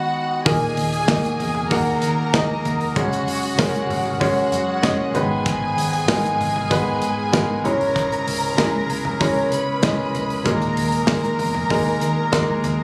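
An intimate, warm concert grand piano with deep bass and audible action noise sits up front beside a lush, bowed violin section with smooth vibrato at the start of this earnest, bittersweet piano-driven pop piece at 96 BPM, joined at 0.5 seconds by a dark, round, foam-muted fingered electric bass and a mid-forward acoustic drum kit with a punchy kick and a rolled-off top, moving through D#sus4, F#sus2, G#m and C#m, captured on a phone in the room with club reverb and compression.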